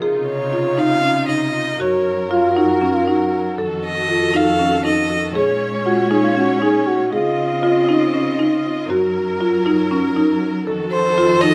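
A dark, expressive solo violin with vibrato and portamento carries the melody from 0.3 seconds and returns at 10.9, over woody, close marimba arpeggios, a lush bowed string section holding sustained chords, and a French horn with light vibrato adding a classical-style second line from 2.3 seconds, all in a hypnotic, urgent contemporary chamber excerpt in 7/8 with light reverb and detailed miking.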